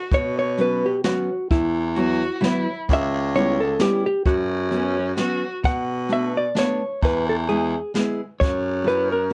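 A lilting musette waltz in 3/4 at 130 BPM, with a gentle swing on the eighth notes, this nostalgic, bittersweet piece in B minor is cut from a longer work. A dark, clean hollow-body electric guitar carries the melody up front, its fingered, compressed tone sitting between E4 and F#5. Beneath it, a raspy, gritty baritone saxophone takes the bass line with vibrato and scooped notes, punchy yet set in a distant, roomy space. A jazz kit played with brushes keeps time on hi-hat, a boomy kick and a medium-tuned snare, sounding airy and polished. A fingerpicked steel-string acoustic guitar enters at 0.6 seconds to add dark accompaniment, while a bowed violin with expressive vibrato and portamento offers a boxy second line until 5.5 seconds. The chords move from Bsus2 through C#m7b5 and Bm7 to a closing F#7, all under light reverb and the warbling pitch drift of worn cassette tape.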